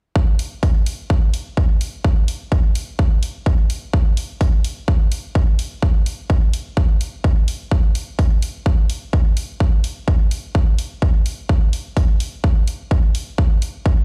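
A straight 4/4 pulse at 127 BPM drives this short EDM excerpt, with an electronic kick drum entering at 0.2 seconds and carrying through to 14.0 seconds. The kick is punchy, layered and up front, giving the passage a polished, produced weight. An electronic hi-hat joins at 0.4 seconds and runs until 13.7 seconds, sitting much lower in the balance as a layered, produced texture beneath the kick. The sound carries the hard echo of a stone room, as if the track were blasting from a big sound system in a bare hall. Despite being built from drums alone, the passage feels anthemic and triumphant.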